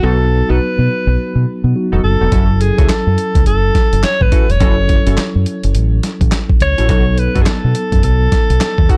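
This is a bouncy, punchy R&B excerpt in a new jack swing style, set in F# dorian at 105 BPM in 4/4 with a 62% swing on the sixteenths, cut from a longer piece. A clear alto saxophone carries the melody in a vintage jazz-style solo voice, with light vibrato, subtone, a soft attack and scooped notes. Underneath, a mellow tine electric piano heard through its built-in speakers plays clean accompaniment. A funky polysynth adds detuned sawtooth and square-wave stabs with a fast attack, a filter sweep and chorus. A deep, round dub bass, fingered and sitting up front, anchors the harmony as it moves from B7 to F#m7 at 2.3 s and back to B7 at 6.9 s. The sampler-style drum kit enters at 2.3 s, pitched down, compressed and gritty, with a thumpy kick, a medium-tuned snare, handclaps and hi-hat, all within a dark, dry production.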